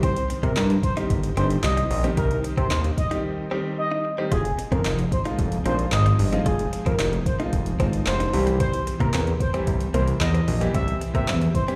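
Dance-pop with a bittersweet, confident mood, this short cut from a longer piece heard live through a club PA sets an expressive, mellow sawtooth synth lead with vibrato, chorus, pumping and slapback delay over a clear, short-sustained grand piano, a very quiet ethereal pad that warbles, a clean direct-recorded electric guitar riff with analog chorus, a fat detuned analog bass with a filter sweep pushed up front, and a smooth electronic R&B kit with soft kick, woody snare, metallic hats and handclaps, all moving from Cm through Fm7 at 4.3 seconds to C at 8.3 seconds.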